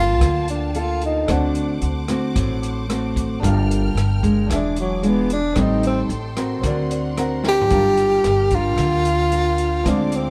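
A breathy, intimate tenor saxophone solo with plate reverb opens this wistful, smooth bossa nova excerpt in G minor at 112 BPM, over thumb-plucked nylon-string guitar, woody pizzicato upright bass, a background grand piano that adds a fill at 6.6 seconds, lush bowed strings and a dark, boomy-kicked jazz kit that fills at 7.4 seconds before the chords return to Gm7 at 7.7 seconds.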